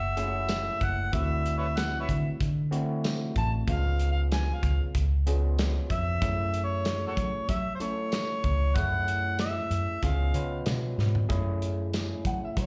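A smoky, mournful soul blues fragment with a straight-eighth feel opens on a mellow harmonica melody, played jazz style with a soft attack, scooped notes and tongue slaps. The harmonica sounds distant and roomy yet sits up front, with overdrive and slapback echo. A picked, compressed electric guitar through a small old amp, slightly broken-up and warm, adds a brief second line until 0.7 seconds. A dark, round, foam-muted fingered bass anchors the low end, and a bright, gritty tine electric piano with lush chorus comps beneath the harmonica. An acoustic drum kit with a tight kick, medium-tuned snare, rolled-off top, tambourine and toms plays up front, and a drum fill at 11.0 seconds leads into a closing passage where the guitar returns at 12.3 seconds for a short solo. The chords move through F#m9, D7 and C#7, and the whole fragment sounds like a live club gig heard through the venue's PA, with a touch of club reverb.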